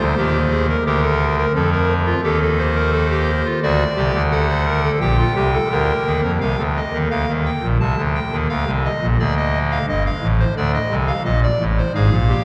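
A hollow clarinet reed stop on solo pipe organ, with chiff and baroque voicing placed up front, carries this contemplative yet driving baroque-style three-part fugue in C minor at 86 BPM, cut from a longer piece and set in a dark production with a long cathedral reverb and vinyl crackle.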